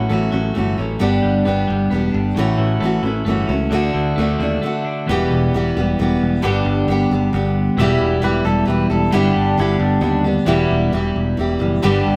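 Rock in 3/4 at 133 BPM, dusty and reflective, cut from a longer piece in E dorian. A warm, up-front picked steel-string acoustic guitar with finger squeak carries the accompaniment, while a clean, twangy, compressed twelve-string electric guitar plays the riff over a punchy, growly picked electric bass, all four players sounding live in one room with moderate reverb. After a short break at 4.6 seconds the chords move from A6, G and D to alternating Em and G, and a pedal steel guitar adds a second line with fingerpicked slide and volume swells from 7.8 to 10.2 seconds.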